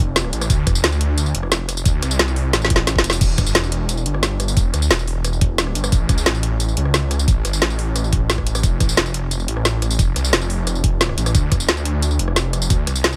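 Tense and aggressive, this short cut from a longer dark technical drum and bass track runs at 177 BPM in a straight 4/4, opening on a thick, saturated detuned saw bass with chorus and overdrive that sits up front in a low register. The up-front drum kit enters at 0.2 seconds with a woody snare, metallic hi-hats, rim clicks, tambourine and crash cymbal, joined by a knocking, tape-warm electronic kick at 0.5 seconds, with a drum fill landing at 2.5 seconds. The layered, produced drums carry a small-room character, while the mix overall stays dry and close.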